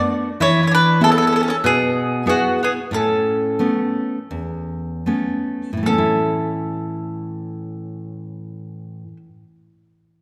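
The rhythm is a free, rubato 4/4 that wanders between 76 and 99 BPM, slowing from 0.4 to 5.9 seconds before a second section takes over at 5.9 seconds, in this short cut from a longer Italian serenade in A major. A fingerpicked nylon-string guitar carries the accompaniment from the start, its deep classical tone placed up front. A bright mandolin enters at 0.4 seconds with the melody, its picked double strings sounding woody and close, while a second, softer mandolin adds a warm lower line beneath it. The harmony moves from E to Aadd9 and settles on A as the second section begins. A wet concert hall reverb surrounds the ensemble, giving the lively, sunny folk playing a spacious glow.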